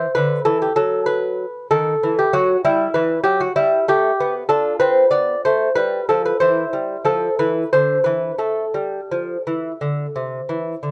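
A solo lute, fingerpicked on gut double strings with some octave-doubled courses, sits up front with a mellow, delicate voice in this short classical passage, a grave yet flowing baroque-style dance in 12/8 at about 57-65 BPM counted in dotted quarters, played with rubato. It opens in E minor, moving from Em through B/F# before turning toward A minor at 4.5 s, where Bm7b5, Fmaj9/E and Cmaj9 lead to a bare A5. Close, detailed miking and light reverb capture the instrument, tuned to A4 = 439 Hz, across its range from C3 to D5.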